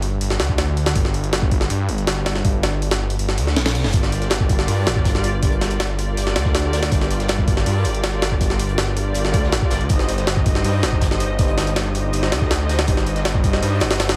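A gritty, pitched-up jungle sampler kit with a thumpy kick and high-tuned snare drives this frenetic, dark drum and bass excerpt alongside a thick, menacing detuned saw bass with tube saturation, while the kick drops out just before a very quiet reverse cymbal at 3.4 seconds ushers in veiled, distant muted strings on Gm7 then Cm/G and a faint, crunchy breakbeat kit with a rolled-off top, all in a small room ambience.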